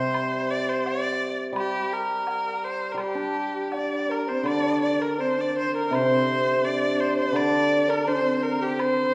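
A clear, focused erhu carries the graceful, tender melody of this Chinese traditional chamber piece with vibrato and portamento, sounding distant yet up front over a shimmering, ringing hammered dulcimer and a very quiet, close woodblock in a free, rubato 2/4. At 3.7 seconds a dark, husky horsehead fiddle with a woody, soft-attack tone and an airy, mellow bamboo xiao enter as second lines. The whole ensemble sits in a wet recital hall reverb, as if captured in a church or concert hall.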